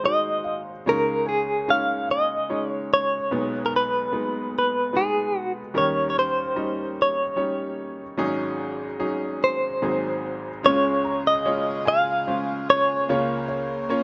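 A clean electric guitar, recorded direct and compressed, carries the picked melody up front from the start with a tremolo shimmer, over a bright, woody upright piano whose slightly detuned tone and audible action noise give this heartfelt, hopeful folk-pop ballad in 3/4 at 74 BPM in Db major an intimate feel. A felt-muted upright piano adds soft, mellow arpeggios in the background, first near the opening and again from 9.8 seconds. At 10.6 seconds a rich studio string section enters with floating, sul tasto sustained chords as the harmony settles on Db, the rough demo mix carrying light reverb and small-room ambience in this excerpt cut from a longer piece.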